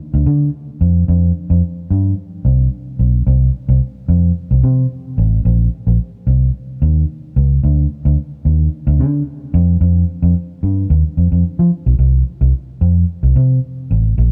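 A vintage muted fingered electric bass carries this funk excerpt entirely on its own, its dark, round, foam-muted tone sitting up front with an amped edge from 0.1 seconds to 14.3 seconds. In C minor at 110 BPM with a straight 4/4 feel and tuned to A4 = 436 Hz, it ranges from A1 to F3 and gives the passage a late-night, funky mood. Light reverb surrounds the bass, and a new section begins at 12.0 seconds before the cut at 14.3 seconds.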